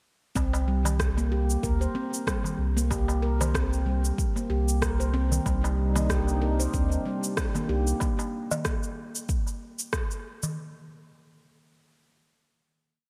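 A swung 16th-note groove at 94 BPM in 4/4 anchors this hypnotic, meditative organic downtempo piece in C minor, built from a soft, deep electronic kick, a tape-warm electronic cabasa and rim click, and crisp, small darbuka played with soft hands, all set in a light reverb. Over a Bbsus2/C chord, a ringing nitrided-steel handpan plays a 10-step loop drifting against the bar through a diffuse ambient delay, while a round sine sub bass holds long gliding notes up front, both stopping at 7.9 s. At 5.5 s the harmony shifts to C minor as a smooth, detuned sawtooth pad with chorus, a moving notch and sidechain pumping enters, and the percussion carries on to the end.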